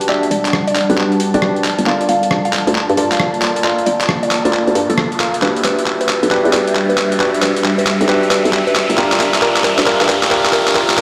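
A gritty, overdriven sampler-style drum kit of handclaps, hi-hat and rim clicks opens this moody, late-night two-step garage excerpt at 135 BPM, sitting up front with a compressed, pitched-down punch and a 64% swing on the sixteenths. Alongside it from the start, a worn, slightly out-of-tune tine electric piano plays stabs through a low-pass filter that sweeps across the whole passage, with light overdrive and digital delay. Underneath, a smooth, detuned sawtooth analog pad holds chorused chords in the background, while an ethereal, airy pad with slow attack and long release adds a mellow texture. A woody, round mallet-like synth pluck enters at 0.1 seconds, carrying a mellow melody through chorus, phaser and tape echo, and a hollow, bouncy FM bass follows at 0.3 seconds. The harmony alternates between Em9 and Gm9 as the whole stretch works as a build-up with a running drum fill, and an electronic riser creeps in from 0.7 seconds, all washed in large studio reverb and vinyl crackle, as if played on a big sound system in a bare room.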